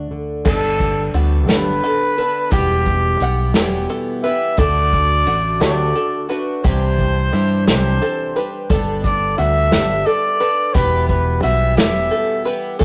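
Anthemic and nostalgic, this indie folk excerpt in G major moves at a slow 58 BPM in a straight 6/8 feel, opening with a full-bodied fingerpicked jumbo steel-string guitar that plays only until 2.5 s before the arrangement builds around a shimmering, octave-doubled twelve-string and a twangy, plunky open-back banjo playing arpeggios. Up front, a mellow trumpet carries the melody with light vibrato and a classical touch, its distant, roomy tone colored by analog delay, while a round, punchy fingered electric bass and an airy acoustic kit played with bundle sticks, with dark cymbals and a punchy kick, anchor the Gadd9, Em, D and Cadd9 progression. Light reverb and a rough rehearsal-room recording shape the whole.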